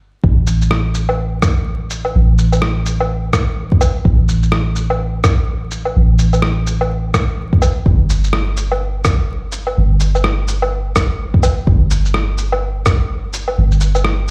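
A deep, round, dark 808-style bass sits up front with sidechain pumping in this rainy, melancholic future garage excerpt, alongside a layered, produced kick drum re-recorded in a small room and a muffled, pitched-down, tape-warm kit of shaker, rim click, woodblock and cabasa, with a swung 16th feel and a mix that sounds as if played on a big sound system in a bare room, with large studio reverb and vinyl crackle.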